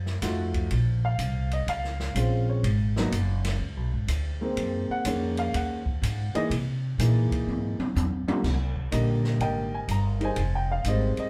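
Swinging and smoky, this jazz piano trio clip, cut from a longer piece, settles into a loose, lilting swing feel. The upright piano carries the melody with a warm tone and long sustain, taking a solo through the opening stretch over rich, altered harmony that moves from F7b9 and Bbm9 through Gb69 to a C7alt turnaround. The pizzicato upright bass sits up front with a woody, steel-string voice, while the acoustic drum kit brings dark cymbals, a medium-tuned snare and a boomy kick, with ride, hi-hat, crash and toms all in play. A drum fill from 7.5 seconds leads into a new section at 8.4 seconds, where the harmony shifts to Cm9 and Fm9. The trio is heard from further back in a club, with a moderate reverb giving the sound an intimate, late-night glow.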